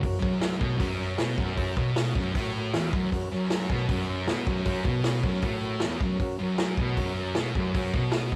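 A thick, double-tracked fuzz guitar sits up front, driving a low riff in F# major at a brisk 156 BPM in a straight 4/4 over a static F# chord in this rowdy, raw garage rock fragment cut from a longer piece. The vintage drum kit sits up front as well, with a punchy kick, a medium-tuned snare and hi-hat carrying a rolled-off top, while a reedy, clean combo organ holds sustained chords quietly underneath until 8.3 seconds. The band sounds like it is playing live in one room, wrapped in a moderate large studio reverb.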